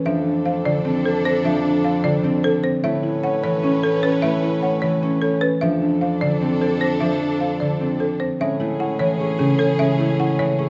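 A brisk, straight 7/8 pulse of 302 BPM eighths drives this bright, hypnotic minimalist classical pattern music in A major: a dry, rustic folk marimba carries the melody over a buzzing, airy second marimba's soft-mallet arpeggios, a ringing, up-front fingerpicked concert harp, lush bowed strings holding sustained chords with vibrato, and a distant, roomy bassoon on the bass line, set in light reverb as the harmony moves from F6 and Aadd9 to Amaj7 at 8.4 seconds in this short cut from a longer piece.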